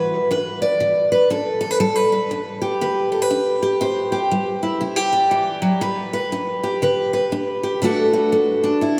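A bright, full-bodied steel-string acoustic guitar, picked up front with audible finger squeak and a touch of subtle chorus and analog delay, carries this short, heartfelt country passage on its own for 9.0 seconds. The swung feel gives it a sunny, easy lilt as the harmony moves from G to C, back to G and on to D. A cathedral reverb with a 5.5-second tail soaks the mix, giving the sound a dreamy, spacious glow.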